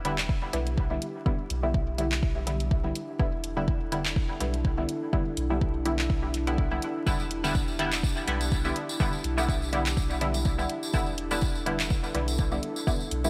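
The up-front filtered dub chord stab, muted and detuned with chorus, phaser and dub echo, leads this nocturnal, deep dub techno excerpt at 124 BPM in E minor on an Em7 chord, over a dark, nasal analog pad with lush chorus and sidechain pumping, a round, soft sub bass, a layered deep house kit of handclaps and dark hats with dub echo, a deep electronic kick, and a jingly tambourine arriving at 7.1 seconds, all set in light digital ambience with vinyl crackle.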